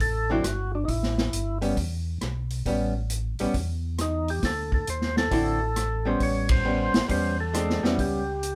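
A swinging, soulful soul jazz organ trio at 135 BPM in A mixolydian opens with a vintage drum kit of hi-hat, kick, ride, rim click and snare sounding acoustic and natural, a round, dark, lightly overdriven tonewheel organ bass with chorus vibrato and slow rotary speaker, and a percussive tonewheel organ melody with key click and slow rotary, joined at 0.3 s by a clean, picked hollow-body archtop guitar comping over D9 and A9 chords in a moderate live-room reverb, with a band accent at 6.4 s in this short excerpt cut from a longer piece.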